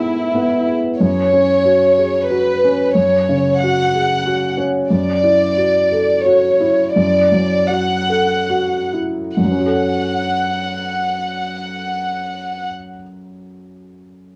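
Longing and melancholic, this fragment of a neoclassical piano and strings piece drifts in a rubato three-time, its sound worn by warbling old cassette tape and the ambience of a small room. A felt-muted upright piano sits soft, mellow and intimate up front throughout, while a chamber violin section carries the melody with light vibrato and sul tasto bowing, bathed in plate reverb until 12.7 seconds. At the very start a dark, woody solo cello and a very quiet rosewood marimba appear only briefly, and the music slows from 3.9 to 9.4 seconds before the closing section arrives.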